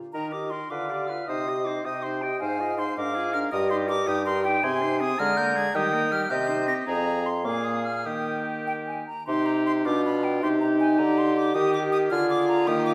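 A clarinet sounds first, a fraction ahead of the rest of the wind quintet, in this cheerful, lively classical-period movement in a lilting 6/8 with a flexible, rubato feel, cut from a longer piece. The concert flute carries the melody up front with a pure, straight tone and crisp attack, while the oboe adds a clear second line, a little quieter than the others. The clarinet, with its vintage colour, and the mellow French horn, touched with light vibrato and miked close, fill in the accompaniment, and the bassoon sits forward beneath them as the bass. A second section begins at 9.3 s with a change of key, and all five players continue together to the cut at 12.9 s. A wet recital hall reverb places the ensemble further back in the room.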